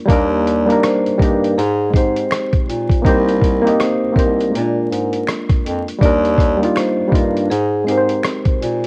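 Melancholic and reflective, this lo-fi hip hop fragment at 81 BPM with a swung 16th feel sets a reedy, up-front electric piano with cassette tape grit over Ebmaj7, Abmaj7, Cm7 and Bb7 chords, a dark, ringing vibraphone melody played with medium hard mallets and the motor off, a bass clarinet with subtone, light vibrato and scooped jazz-style notes, a muffled, compressed, pitched-down sampler-style kit with thumpy kick, hi-hat and rim click, and close finger snaps in the background from 0.8 seconds, all in a small room with light reverb and vinyl crackle.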